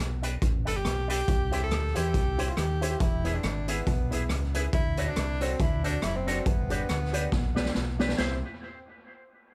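A dark, round fingered electric bass opens this bouncy, cheerful ska excerpt. The raw garage drum kit joins almost at once, with a boomy kick, a gritty, saturated sound and a rolled-off top, playing hi-hat, rim clicks, snare and splash cymbal up front in a small room. A bright, twangy electric guitar runs through an envelope filter, playing clean, picked accompaniment coloured by tremolo and dub echo. From 0.7 seconds the tenor saxophone carries the melody with a clear, punchy pop tone, vibrato and its own dub echo. A woody upright piano adds stabs with long sustain from 1.5 seconds, over a swung groove that moves from G through C, E and D7 back to G. A drum fill at 7.3 seconds leads into a new section, and a light reverb surrounds the mix.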